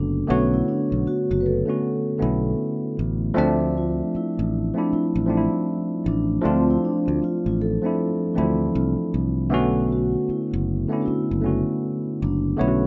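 Vibraphone, tine electric piano and fingered electric bass enter together on a Bm9 chord in this smooth, sultry neo-soul R&B piece at 78 BPM in B minor with a swung 16th-note feel: the soft-mallet vibraphone carries a mellow, dark melody with slapback echo, sitting a little beneath the worn, slightly out-of-tune electric piano and the growly, punchy bass up front, as the harmony moves to Dm9 at 3.4 seconds and back to Bm9 at 9.5 seconds in a dry, rough home-demo mix.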